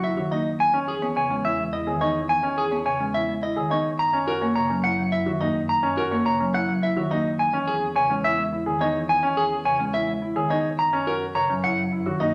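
In a straight 3/4 at 106 BPM, this bright, propulsive piece of minimalist classical pattern music in E lydian moves between F#7 and Emaj7 throughout its 12.3 seconds, cut from a longer work. A clean, twangy electric guitar carries the picked melody up front, while a polished baby grand piano spins arpeggios and a woody, rustic marimba played with soft mallets fills in the accompaniment. Beneath them, a dark, lush bowed double bass section adds a low bed with vibrato and portamento, all set in a wet, large studio reverb.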